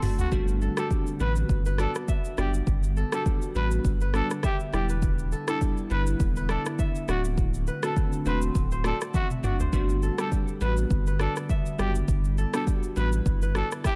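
A growling, raspy trumpet carries the melody from 0.2 seconds, with light vibrato, scooped notes and tape echo, over a breezy, joyful afrobeats groove at 102 BPM in G major with a gentle 16th-note swing. An up-front electronic drum kit with a deep kick, crisp hats, rim clicks, shaker and toms, marked by fills at the start and at 9.1 seconds, is joined by a thick, saturated sub bass. Around them, a fingerpicked, ringing kora riff with tape echo, chorused digital keys with a filter sweep, and an ethereal FM pad that warbles softly in the background move through Gmaj7, Em7 and D7 in a dry mix cut from a longer piece.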